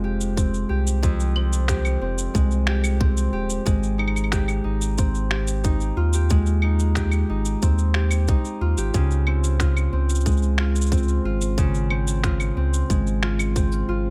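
Delicate and pastoral, this folktronica excerpt moves at 91 BPM in a straight 4/4 in Ab major, with a bright, ringing Celtic harp up front playing fingerpicked arpeggios through a digital delay over chords that shift from Fmadd9 to Abmaj7 at 3.7 seconds and Dbmaj7 at 8.9 seconds. A round, sine-like sub bass with a fast attack holds sustained low notes beneath it, while a tight, tape-warm electronic kick re-recorded in a small room and a muffled, pitched-down layer of sampled cabasa, claves and finger snaps sit in studio reverb. The whole cut from a longer piece rests in a digital ambience.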